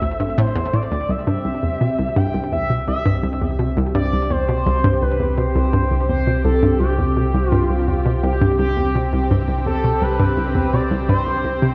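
Opening with all four synths at once, this cosmic, expansive fragment of sequencer-driven space music sets an up-front, hollow and bouncy square-wave pluck riff with chorus and delay beneath a smooth, expressive sawtooth lead touched with vibrato, over a lush, airy unison pad and a deep, round sine sub bass, moving from Am to C inside a wet concert-hall reverb and a dark production.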